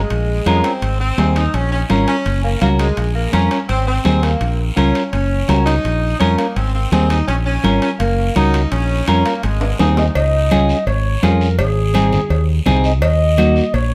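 A fiery, danceable cumbia moves at a brisk straight four, heard as a short cut from a longer piece. A dark, round fingered electric bass sits up front under a bright, twangy clean electric guitar, while congas with a thick skin and ringing metal-shell timbales and cowbell sit further back, joined by a raspy guiro, all in a small-room sound. A clear saxophone section carries the melody with vibrato and a smooth top, bathed in plate reverb and tape echo, over a minor-key cycle that keeps returning to its home chord. A drum fill at 9.6 seconds opens a new section at 10.2 seconds, where the harmony shifts and a breathy, whispered clarinet takes a distant, intimate jazz-style solo with scooped notes and a soft attack. The saxophones stop at 10.1 seconds, handing the line to the clarinet through to the end.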